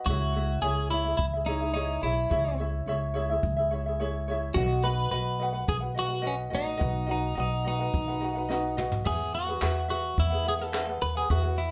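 Heard from a little further back in a studio room with a short, wet reverb, this carefree, sunny acoustic pop excerpt moves at 107 BPM in E major, drifting from C#m to B before landing on Eadd9 at 9.1 seconds. A clean, compressed twelve-string electric guitar carries the picked melody up front, while a light, fingerpicked ukulele and a woody, thumpy pizzicato upright bass sit close beside it. A jazz brush kit with dark cymbals, a high-tuned snare, a boomy kick, toms and handclaps keeps a straight pulse, with a drum fill from 8.5 to 9.1 seconds leading into the new section.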